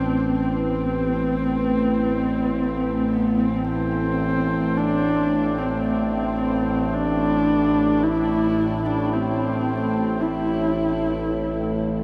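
A slow, straight 55 BPM pulse in 4/4 underpins this ominous, cavernous dark ambient drone in A minor, cut from a longer piece and resting on a single A minor chord throughout its 12 seconds. A bright, resonant drone of moving overtones sits up front in the low register, beneath a deep, moody pad of detuned, wave-folded sustained chords with chorus and shimmer reverb. A husky, woody horsehead fiddle carries the bowed melody with vibrato and portamento, its tape echo and shimmer trailing into a huge, dreamy reverb that soaks the whole mix.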